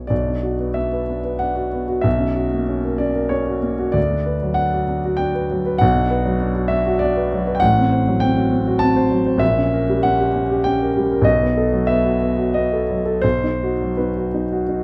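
This romantic classical character piece for solo piano is in B minor and carries a passionate, brooding mood across its 14.8 seconds, a fragment of a longer work. It moves in 3/4 at 81-103 BPM with a freely breathing rubato, so the pulse stretches and gives. The concert grand sounds dark and mellow, placed up front with deep bass, and the mechanical noise of its action is audible, lending a vintage, intimate closeness. The harmony opens on Bm and F#7/B, passes through diminished colours at F#dim/A and A#dim7, then turns to B7 at 11.2 seconds before settling on a B major chord at 13.2 seconds. A moderate stone-room reverb surrounds the instrument, adding a stony resonance to the sound.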